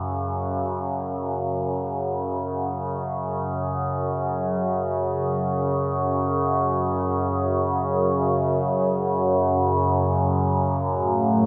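A resonant, up-front sawtooth-and-sine drone with moving overtones, treated with chorus, phaser and its own reverb, holds this desolate dark ambient excerpt in a vast, echoing space, until a deep, detuned analog pad with a sub octave enters at 10.9 s with a brief, moody sustained chord under its own chorus.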